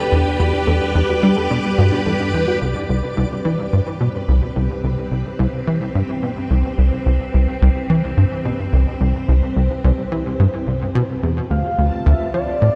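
Ambient, sequencer-driven space music at 108 BPM in C major, luminous and cosmic and cut from a longer piece: a punchy, funky analog bass riff sits up front beneath lush, vintage string-machine chords that fade in from 2.6 s through phaser and ensemble chorus, while a soft, round pluck arpeggio and a twinkling granular texture sparkle in the background during the first 2.6 s, and a shimmering pulse-width lead melody with vibrato arrives at 11.5 s, the whole piece steeped in a vast, echoing cathedral reverb.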